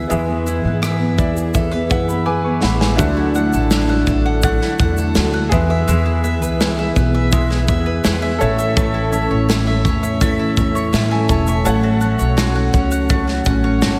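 Heartfelt and easy-going, this acoustic pop passage moves at 83 BPM in a straight 4/4 and is cut from a longer piece. A full-bodied fingerpicked dreadnought guitar, double-tracked with a slapback echo, carries the accompaniment beside a polished grand piano. A picked bowl-back mandolin with tape echo spins arpeggios from its double strings, while a soft, flute-like tonewheel organ holds sustained chords in the background, its chorus vibrato and key click heard through a stopped rotary speaker. A woody, growly pizzicato upright bass anchors the low end, and the up-front studio drum kit, with punchy kick, medium-tuned snare, rim click and shaker, comes in at 0.1 s. The piano adds a fill from 0.8 s, and a drum fill leads into the next section at 3.0 s, where the chords move from Dadd9 through E and A to F#m/A. A lush hall reverb gives the mix a big arena sound.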